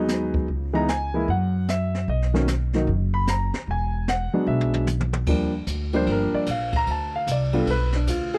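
A natural, up-front grand piano carries the melody in this sophisticated, warm jazz piano trio excerpt, swinging in 4/4 at 150 BPM over chords such as Dbm, Bmaj7 and E9, before taking a solo from 5.3 seconds over Ebmaj9, Dm7 and Bdim. Beneath it, a woody, growly pizzicato upright bass sits close, while a brushed drum kit with dark cymbals, a high-tuned snare and a boomy kick plays with a rolled-off top and breaks into a fill at 4.5 seconds. The sound is dry and close, in the manner of a 1970s studio recording.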